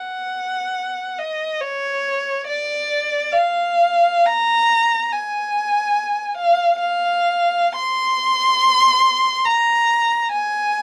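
A single bowed violin opens the recording at once and carries it alone for its full 10.8 seconds, in an unaccompanied classical passage cut from a longer piece. The playing moves in free time, with a meditative, yearning mood that lets each phrase breathe. Its rich tone sits high, between Db5 and C6, colored by expressive vibrato and portamento slides between notes. The instrument is placed up front yet keeps a faintly distant quality, framed by light reverb. The production is dark and warm, and the tuning rests at A4 = 441 Hz.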